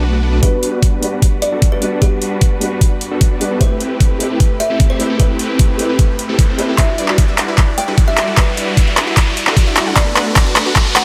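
This playful, euphoric future bass excerpt opens on a very quiet bed of smooth, bowed studio strings, huge detuned supersaw chords and a brief flash of a bright unison pluck. At 0.4 seconds a half-time groove arrives. An overdriven, knocking electronic kick sits up front, joined by a layered dubstep kit of handclaps and bright hi-hats. In the background, a woody, hollow kalimba carries the melody through dub echo, while a mellow, felt-muted upright piano plays accompaniment with its action noise audible. The whole passage is a build-up over Gmaj7, Am9, Em9 and Bm7: the lush supersaw riff pumps with a phaser and a filter sweep, and an electronic riser enters in the background at 3.1 seconds. At 6.8 seconds the piano stops, the punchy, wave-folded pluck returns with pumping, delayed arpeggios, and a drum fill carries the section to its close inside a digital ambience.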